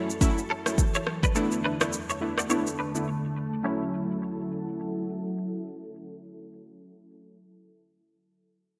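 Bathed in a lush hall reverb, this short cut from a longer afrobeats piece has a bright 1980s-style digital sheen, with lossy compression artefacts. The mood is sultry and mellow, and the groove carries a light sixteenth-note swing. An electronic afro-pop kit sits up front with a deep kick, rim click and shaker, while round, detuned sawtooth analog keys with chorus and a filter sweep play decaying accompaniment chords over F#m7 and E7sus4. A glassy, ethereal FM pad with a slow attack warbles through sustained chords, and a clean, twangy, direct-recorded electric guitar picks a compressed, scooped riff through chorus and delay. The drums drop out at 3.1 seconds for a brief break, and the guitar stops at 3.8 seconds. The pad carries on into the next section until 6.7 seconds, and the keys until 7.4 seconds.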